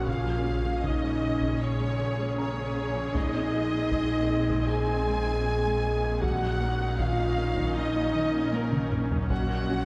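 Heard from further back in a wet scoring stage, this brooding, tense excerpt of a hybrid orchestral and electronic film score sets lush bowed strings over a dark French horn section. Clear, distant violins carry the melody, a second violin section adds a smooth-topped line, and expressive violas accompany with portamento, while cellos, a rich double bass section and a snarling, distorted saw bass hold the low end. A warbling, lo-fi tape-like pad with chorus sustains chords, and a soft round pluck plays very quiet arpeggios. A very quiet, close, dry taiko ensemble with heavy sticks drums throughout and plays a fill at 8.5 seconds, as a felt-muted upright piano adds an intimate, mellow texture until 6.2 seconds.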